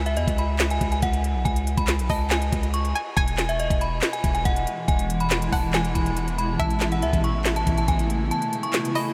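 A ringing, inharmonic FM bell carries the melancholic, menacing melody of this half-time trap excerpt over a knocking trap kit of kick, sharp snare, crisp hats and handclaps and a deep sine 808 bass, while a twangy string-like resonator pluck sits in the background, a cloudy granular pad drifts in at 4.6 seconds, the kick drops out at 8.3 seconds, and the whole dreamy mix is soaked in huge ambient reverb.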